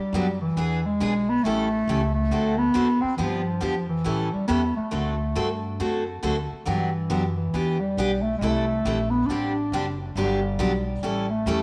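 Country western swing in G major at 138 BPM, this cheerful, swinging excerpt moves with a lilting swung-eighth feel through jazzy changes such as Gmaj7, E7, A7 and D7, later passing through Em7, Am7 and a D7sus4. A breathy bass clarinet carries the melody up front from the start, its dark, smooth-topped tone colored by vibrato in a jazz-style solo voice. A picked steel-string acoustic guitar, bright and full-bodied with the character of a dreadnought, sits up front as accompaniment, and finger squeaks give it a close, human presence. Underneath, an upright bass with gut strings plays pizzicato, supplying a woody, thumpy low end that stays dark. A moderate echo chamber reverb with a 1.4-second tail places the trio in a studio room, lending the ensemble a cohesive sheen as the clip runs to 11.6 seconds.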